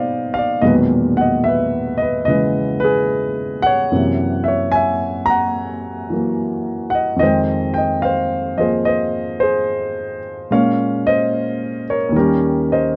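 Solo jazz piano at a relaxed 73 BPM in 4/4, with a swing feel on the eighth notes and a relaxed, swinging mood. A single grand piano carries the whole 13-second excerpt, ranging from Eb2 up to Bb5 and sitting up front with a warm tone. The harmony moves through rich extended chords, opening on B7alt before settling on Emaj9#11, then passing through Gb7#11, Fm9 and Bbm9 and arriving on Eb7 near the end. The recording has a dry, close 1970s studio character, with a light touch of reverb on the piano. Cut from a longer piece, this passage covers a single section, with the tuning set slightly high at A4 = 443 Hz.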